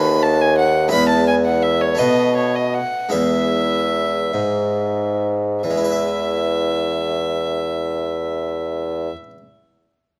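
Close, detailed microphones and a light reverb give this short extract from a longer baroque-style sonata movement an intimate clarity. Over a serene, flowing 6/8 in E major at a gentle 44-59 BPM, a single period-style violin sings the melody with a rich, reedy gut-string tone up front, while a full-bodied Flemish harpsichord on two sets of strings plucks the continuo accompaniment and a warm solo bassoon carries the bass line. The music slows through its opening 5.6 seconds before a second passage begins, and all three parts fall away shortly after 9 seconds.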